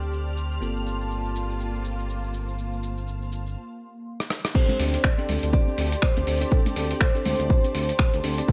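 Deep and late-night, this 122 BPM deep house excerpt with a swung 16th feel sets a hollow, chorused pad, rich bowed studio strings, bell-like electric piano stabs and a smooth up-front synth bass, all pumping to the sidechain, under a gritty low-passed sampler-style kit of snaps, rim clicks, hats, shaker and crash, with a faint shimmering string machine violin layer that drops out at 3.6 seconds, before a drum fill brings a drop at 4.5 seconds where a punchy, tape-warm electronic kick lands with very quiet congas and a metallic, tape-echoed vibraphone melody returns at 4.6 seconds, the harmony moving from D7sus4 to Gm11 and back to D7sus4 at the drop, all in digital ambience.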